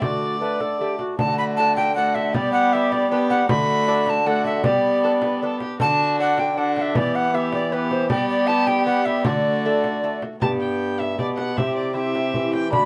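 From the first beat, a small period consort launches into a courtly, festive Renaissance-style dance in 3/4 at 156 BPM, set in D mixolydian. A single bowed violin carries the melody with a dark, nasal gut-string tone that sits distant in the mix. The airy, tongued tenor recorder, with its wooden chiff, plays the second line up front as the most prominent voice. Beneath them, a delicate fingerpicked lute with double gut strings lies in the background, and a smooth, reedy viola adds accompaniment. A clear bassoon with light vibrato and a soft attack plays the bass, while a small, bright frame drum played with soft hands sounds close and dry. The harmony moves among D, G and Em before a new section at 10.4 s turns from G to C, all within a moderate studio reverb, in this passage cut from a longer piece.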